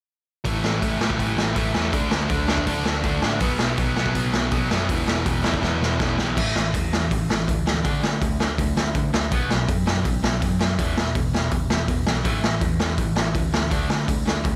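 A raw garage drum kit, gritty and saturated with a punchy kick and rolled-off top, sits up front in this rowdy, rebellious punk rock excerpt at 163 BPM, alongside a sludgy overdriven guitar that stops at 6.4 s, a bright, compressed distorted guitar set in the background, and a growly, amped picked bass, all cycling through A5, D5, B5 and E5 with little reverb, while a drum fill from 5.6 to 6.4 s leads into the second section.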